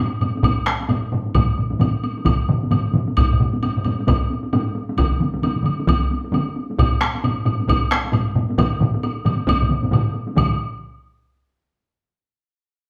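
Set in 4/4 at 133 BPM with a 60% swing on the sixteenths, this driving Japanese traditional taiko passage gathers pace from start to finish and is cut from a longer piece. Four taiko ensemble parts carry the performance: one struck with heavy sticks has a vintage, band-limited tone, another sits up front in a small room, a third stays in the background, and a fourth, played with hard sticks, sounds close. A woody, distant woodblock rings out as if from a large room, joining the drums from 0.2 seconds. The last taiko layer enters at 1.4 seconds, deepening the powerful, insistent pulse. The group plays live together in one room, bathed in a wet studio reverb, and a brief second section begins at 10.4 seconds as the tempo keeps pushing forward.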